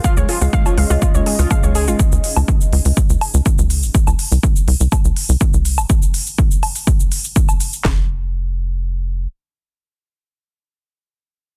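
An overdriven techno drum kit with a heavy kick, cracking snare and handclaps leads this driving, dramatic melodic techno excerpt, joined by an electronic shaker, smooth hi-hat and woodblock carrying the same overdrive, a tight, punchy sawtooth sequencer bass that enters at 0.2 s with sidechain pumping, a warbling lo-fi pluck playing chorused, delayed arpeggios, a fat, detuned analog lead melody with lush chorus and tape echo, and a deep, moody pad holding sustained chords in the background through chorus and phaser, all set in digital ambience under a dense, heavily limited modern master.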